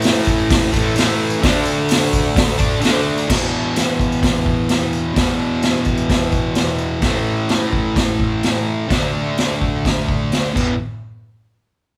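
Garage rock at 128 BPM in a straight 4/4, this raw, swaggering excerpt from a longer piece has a bright, double-tracked fuzz guitar riff churning through A5, D5 and E5 power chords up front beside a punchy, saturated drum kit with a high-tuned snare, crash, hi-hat and kick, while a jingly, vintage tambourine rattles in the background until 6.9 seconds, all captured as a band playing live in one room with light reverb before a drum fill at 10.6 seconds leads into a brief chordless closing section.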